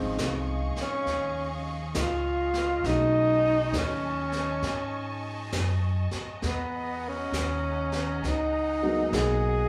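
This is a slow jazz number at 67 BPM with a swung feel, intimate and wistful in mood, cut from a longer piece. A breathy, whispered tenor saxophone carries the melody up front from 0.8 seconds, its mellow tone softened by vibrato and gentle attacks. Beneath it, a woody pizzicato upright bass sits close and prominent, while a grand piano with audible action noise plays accompaniment further back. A muted string section holds veiled, lush bowed chords, and a roomy, distant brush kit with a high-tuned snare and hi-hat enters at 0.2 seconds. The harmony drifts from Dbmaj9 to B13 at 2.8 seconds and on to Emaj9#11, and the band sounds like it is playing live together in one studio with a moderate large reverb.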